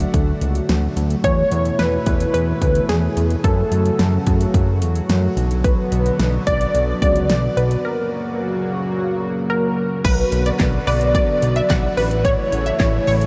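A straight 4/4 pulse at 109 BPM drives this cool, dreamy synth-pop passage in B minor, cut from a longer piece. A punchy, overdriven pop drum kit sits up front with kick, fat snare, metallic hi-hats, handclaps and crash, alongside a thick analog bass built from detuned sawtooth and square waves with a filter sweep. Underneath, a shimmering, retro pulse-width pad holds sustained chords from the start, while a funky polysynth comp enters at 1.2 seconds carrying the melody through chorus and a diffuse ambient delay. The harmony moves from D through Esus4, F#m and Bm to an F# break at 7.8 seconds. A lush, wave-folded unison pluck joins as a second line at 10.0 seconds over Bm and A. The whole mix is soaked in a huge ambient reverb that gives it a hazy, spacious glow.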